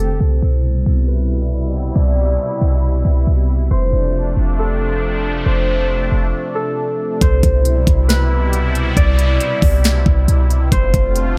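A ringing concert harp carries the melody through a low-pass filter and delay in this dreamy, blissful excerpt of atmospheric cloud-rap, set in a half-time feel over an airy, detuned sawtooth pad with chorus, sidechain pumping and a filter sweep that runs on through a short break at 6.3 seconds. A deep, boomy sine 808 bass sits up front throughout. At 7.2 seconds an overdriven trap kit joins with a knocking kick, sharp snare and crisp hats, all in a dry, close mix.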